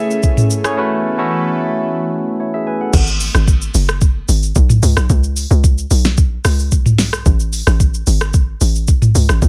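A straight amapiano groove rides on a produced electronic kit with a soft kick, fat snare, smooth hats, rim clicks, shaker, toms and crash, giving this deep, hypnotic fragment of a longer track its tape-tinged pulse. A polished grand piano touches a single melody note at the very start, while a bright, barky tine electric piano and an airy, breathy, detuned pad with chorus carry the chords through the break. At 2.9 s the drop arrives as a hollow, bouncy log drum bass enters with fast, decaying, percussive hits, sitting up front with the drums in a dry, close mix.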